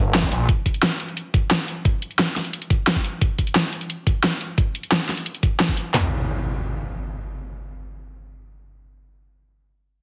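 Dark, mechanical technical drum and bass cut from a longer piece, opening with a brief snarl of growling, detuned sawtooth bass with distortion and sidechain pumping as two up-front layered electronic kits enter and take over, one with a huge snare and bright hats, the other with knocking kick, cracking snare, handclaps and toms, both tape-warm in small room reverb, until an electronic impact lands at 5.9 seconds, all under light digital ambience and a heavily compressed radio sound.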